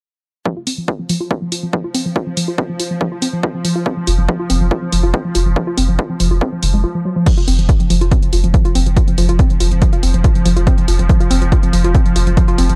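A warbly, dusty pluck carries the riff in this driving, industrial peak-time techno cut, its detuned, wave-folded tone thickened by chorus, tube saturation and analog delay, with a filter sweep running over it from 0.5 to 7.3 seconds. Underneath, a swarming drone hums with a slow attack and long release, its granular, vintage texture wrapped in its own reverb and breathing with sidechain pumping. A layered, punchy electronic kick sits up front with a straight drive, while an analog drum machine adds tape-warm hi-hats and crash cymbals that pump with sidechain. At 4.1 seconds a deep, thick sub bass arrives, overdriven and low-pass filtered, and the music moves into its second section at 7.3 seconds. The whole excerpt has a dry, gritty hardware-and-cassette sound, close and raw.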